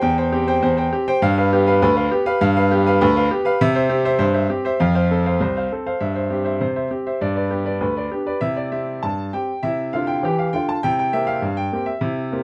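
A straight 2/4 pulse at 100 BPM drives this lively, jaunty ragtime piano passage in C major, cut from a longer piece. A solo grand piano, brilliant and up front, plays alone from 0.0 to 12.4 s across a span from C2 to A5, moving through C/E, G7, F and C/G before a new section at 8.4 s settles on C and turns to C7. A snug booth ambience with a brief 0.2 s decay surrounds the piano's open tone.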